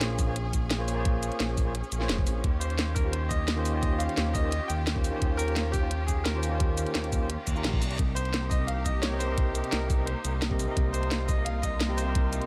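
Liquid drum and bass at 173 BPM, rolling and lush, in which a gritty, thumpy electronic kick and a garage drum kit with a cracking snare and shaker join a smooth, mellow synth bass, while a barky tine electric piano with dub echo and a bowed, vibrato-rich string section pumping in the background carry chords moving from Bbm7 to Eb13 and Cm7, a bright, intimate grand piano with audible action noise takes the melody from 2.6 s, and a reverse cymbal sweeps in at 7.4 s.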